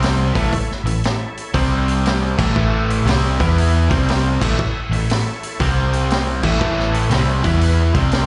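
Blues rock in a power-trio, southern rock vein, this swaggering, driving 8-second cut from a longer live club gig swings as a bright, double-tracked crunchy guitar riff with slapback echo rides over a round, foam-muted vintage bass, a punchy vintage drum kit with dark cymbals and a high-tuned snare, and a gritty, key-clicking tonewheel organ holding sustained chords in the background through a lush chorus vibrato, all set in a small room heard through the venue's PA with a rolled-off top and chords moving between A, C5 and E5.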